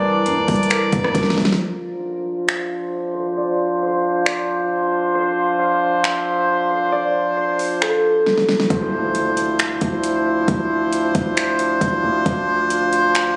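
Spacious and hazy, this atmospheric cloud-rap excerpt moves at 135 BPM in a half-time 4/4 feel in D minor, with bright, tight classical-style brass chords up front, low-pass filtered and pumping from sidechain compression, under a ringing, thumb-plucked harp melody with tape echo and its own low-pass filter until 10.0 seconds, while an overdriven electronic R&B kit of soft kick, fat snare, metallic hats, finger snaps and rim clicks carries 12-bit sampler grit, and a deep sine 808 bass decays under the opening before returning at 8.7 seconds beside a background impact, the whole bathed in light reverb with a phone-in-the-room character.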